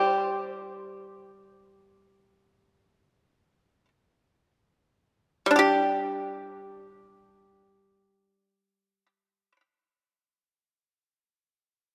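This is a Chinese traditional piece for solo plucked strings, an excerpt cut from a longer work, with a flowing, serene mood and a free-time pulse. A single pipa carries everything, played with fingerpicks and sitting up front, its tone acoustic, percussive and dry at the source while staying warm across its G3 to G4 range. The opening passage gradually slows through its first 5.6 seconds before the music moves into a new section. The pipa stops at 9.6 seconds. A wet concert-hall reverb surrounds the instrument with a long, airy decay that gives the solo its spacious, contemplative quality.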